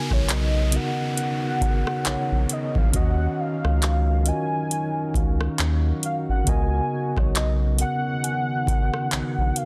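Contemporary R&B in a moody, longing vein, this brief cut from a longer piece pairs a velvety, detuned synth lead carrying the melody with mellow tine electric piano chords, while a saturated sub bass and a booming analog drum machine of deep kick, metallic hats, handclaps and rim clicks sit up front with a softly clipped snare. A dark, chorused ambient pad enters at 1.4 seconds and stays in the background with its own reverb, and a very quiet, bell-like celesta adds delicate sparkle from 0.3 seconds. An electronic downlifter sweeps underneath until 6.5 seconds, all inside a dense, heavily limited modern mix with a digital ambience.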